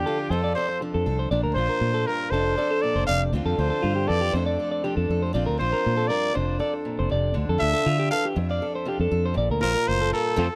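Warm and danceable, this short highlife cut from a longer piece moves at 119 BPM in a straight 4/4 in F major, cycling mostly between F6 and Bbadd9 with touches of Dm7 and Dm. A raspy, growling trumpet with vibrato takes a jazz-style solo up front throughout, its close-miked grit trailed by tape echo, over a bright, freshly strung fingerpicked acoustic archtop guitar and a clean electric guitar playing picked arpeggios, also with tape echo. A round, foam-muted fingered electric bass sits dark and direct at the front of a dry, close 1970s-style studio sound with light reverb, and the band hits an accent at 10.4 seconds.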